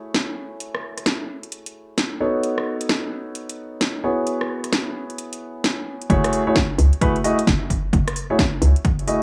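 Over a swung two-step garage groove of metallic hi-hats, rim clicks and a cracking, overdriven snare, dark, mellow concert grand piano stabs carry delayed echoes through soulful late-night ninth chords in this dry excerpt, until the drop at 6.1 s brings in a punchy overdriven electronic kick and a hollow, bouncy FM bass that pumps against the sidechain.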